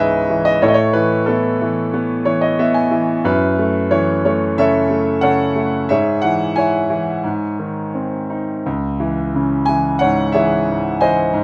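A bright concert grand piano carries this brief, brooding classical excerpt alone, its brilliant upper notes and deep bass spanning C#2 to G#5 with long sustain in an open, up-front sound, plus a fill between 1.9 and 3.2 seconds. The lyrical, cool passage sits in C# minor at 90 BPM in 4/4 with a rubato feel, moving from C#m7 through F#m7 and G# before settling on C#m at 8.7 seconds. A moderate small-room ambience surrounds the instrument, tuned to A4 = 441 Hz.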